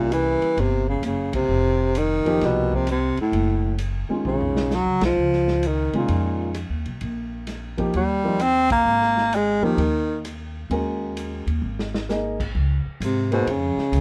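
A breathy, whispered baritone saxophone carries the melody with scooped notes and vibrato over a dark, mellow grand piano with audible action noise and a woody pizzicato upright bass, joined almost at once by a muffled, lo-fi vintage drum kit with a punchy kick, in this swinging small-group jazz excerpt dotted with band accents and short drum fills under light reverb, the saxophone falling silent at 10.3 seconds before returning at 13.0 seconds.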